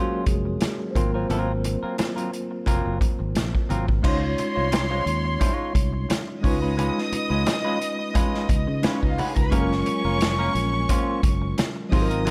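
A lightly swung sixteenth-note groove in four carries this lush 1970s-style soul excerpt, where a mellow tine electric piano takes a solo over a clean, hollow-body electric guitar riff, warm fingered bass, an up-front vintage kit with a punchy kick and dusky cymbals, and very quiet low-tuned congas, until a warm, intimate violin section enters at 4.0 seconds with a soft-edged, vibrato-laced second line, the whole set in small room ambience.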